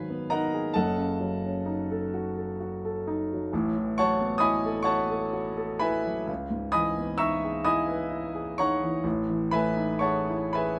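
A warm concert grand piano sits up front in a moderate studio reverb, its deep bass, open tone and long sustain carrying this mysterious, wistful impressionist solo piece in a slow, rubato 6/8 at 43 BPM, with uneven beats and rich chords such as G#m7, A69 and C#m9 spanning F#1 to E6 across a brief 10.8-second passage cut from a longer work.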